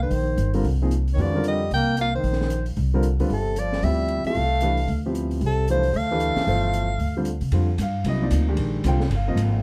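Modal jazz with an intense, hypnotic swing, this short excerpt moves through suspended ninth chords over a woody, pizzicato upright bass placed up front. A soprano saxophone with subtone, scooped notes and light vibrato carries the melody in plate reverb while a distant, roomy trombone plays a second line beneath it; both stop at 7.3 s, leaving the bass, the intimate grand piano, with its audible action noise, and the small-room drum kit's hi-hat, ride cymbal and high-tuned snare to carry on. The production is dark and warm, with light reverb.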